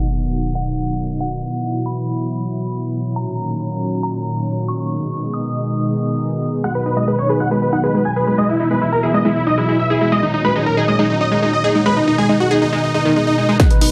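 A sub drop and impact open this soaring, euphoric uplifting trance passage at 138 BPM in G# minor, as a silky, detuned analog string pad pumps under a filter sweep and a glassy, crystalline FM bell warbles through chorus and dub echo. At 6.6 seconds a huge, thick supersaw takes the melody up front, joined by a punchy, bright unison pluck playing arpeggios and a boxy, intimate grand piano in the background, all three pumping and trailed by delay over a cycle of B, Esus2, D#m7 and G#m. At 13.6 seconds a riser and a brief drum fill arrive, with an overdriven kick and a tape-warm analog snare and hi-hats, all inside a moderate digital room reverb.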